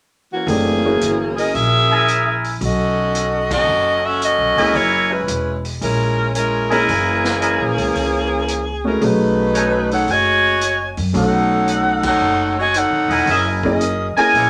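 Joyful and energetic, this big band swing excerpt moves at 112 BPM in 4/4 with a firm swing on the eighth notes, centred on F# mixolydian. A mellow saxophone section carries the melody from 0.3 seconds, up front with soft attacks and vibrato, while a warm baby grand piano accompanies with long sustain and a trace of audible action noise. An upright bass played pizzicato gives a woody low end, and a swinging drum kit with a punchy kick, medium-tuned snare, hi-hat and crash cymbal sits further back. A tight, vintage-toned trumpet section adds soft-edged stabs from 1.9 to 9.8 seconds and returns at 13.1 seconds, with the whole band hitting accents at 3.4 and 11.9 seconds. Moderate club reverb lends an intimate room feel as the harmony shifts between F#13 and B13.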